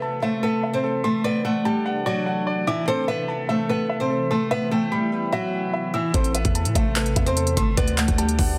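A dense, heavily limited modern mix sits in a digital ambience in this melancholic, menacing trap cut, taken from a longer piece and set in A dorian at 147 BPM with a half-time feel. From the start, an up-front, fingerpicked nylon-string guitar carries the melody through a digital delay, its small acoustic tone set over a worn baby grand piano with long sustain playing accompaniment higher up. Beneath them, a dark, glassy FM pad holds sustained chords with a slow attack and long release, its ethereal haze coloured by ensemble chorus and built-in reverb. The harmony moves through Am, Dadd9 and Em before returning to Am and Dadd9. At 6.1 seconds the low end drops in: a deep, boomy 808-style bass with a sine core, noise layer, fast attack and decaying tail, alongside an up-front, tape-warm electronic trap kit of knocking kick, crisp hi-hats and handclaps.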